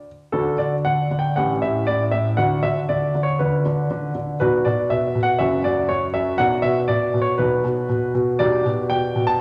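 A clear, polished grand piano plays alone, up front and intimate with audible action noise and long sustain, in this cheerful, elegant fragment of a classical-period sonatina taken with a rubato feel in 4/4, its harmony moving from D and A7 toward B minor and F#5 before settling on G/B near 8.4 seconds, all set in a wet recital hall reverb.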